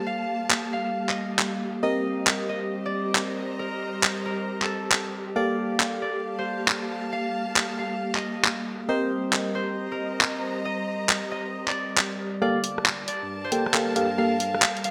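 Up-front, layered electronic garage drums with bright hats, handclaps and rim clicks in gated reverb enter at 0.5 seconds, driving a skippy, soulful two-step garage groove at 136 BPM in G minor with a swung 16th feel. A glassy, bell-like FM electric piano plays chorused, delayed stabs, and a ringing, fingerpicked acoustic concert harp carries the melody through digital delay. Beneath them, an ethereal, airy pad holds mellow chords under a filter sweep, and muted con sordino strings add a dark, veiled texture. The chords move between Gm9 and Cm7 in a lush hall with a 1980s-style digital sheen. At 12.4 seconds a build-up begins with a filter sweep on the electric piano, and a deep, saturated sub bass slips in far in the background of this cut from a longer piece.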